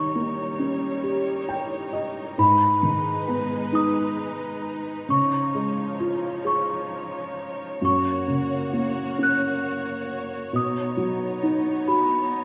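A bell-like, sweet celesta carries the melody high above a felt-muted upright piano, whose soft, intimate accompaniment, with audible action noise, sits up front and adds a brief fill from 1.0 to 2.4 seconds. This is a gentle, innocent lullaby in 6/8 and F# major at a slow 44 BPM, cut from a longer piece. Veiled con sordino strings hold dark sustained chords beneath, moving from D#7 through G#m and C#add9 to F# and Badd9, all set in a recital hall reverb.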